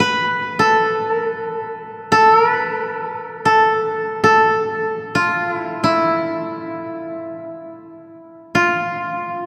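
A lone koto, plucked with fingerpicks, carries this austere, solitary fragment of traditional Japanese chamber music, its woody, dry tone sitting up front as it moves in free time between E4 and B4. The instrument plays alone for the full 9.5 seconds, cut from a longer piece, while a cathedral-like reverb with a five-second tail surrounds it in a vast, echoing space.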